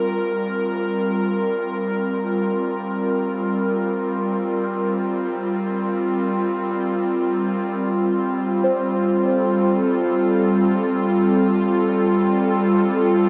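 Soaked in a lush hall reverb with a long 2.7-second tail, this short ambient excerpt floats in free time in G minor with a reflective, serene mood. An airy, breathy pad sits up front from the start, holding soft sustained chords between G3 and Bb4, its detuned, nasal tone carrying a faint noise layer, a slow attack and a long release thickened by chorus. The harmony rests on G minor before opening onto a G9sus4 at 7.8 seconds, giving the second section a suspended, dreamlike lift. At 8.6 seconds, muted, felt-like synth keys join in the background with quiet arpeggios around C5. Their intimate, warbling, vintage character and fast, decaying notes are smeared by chorus and a diffuse ambient delay, sinking into the dark haze behind the pad until the passage is cut off at 13.3 seconds.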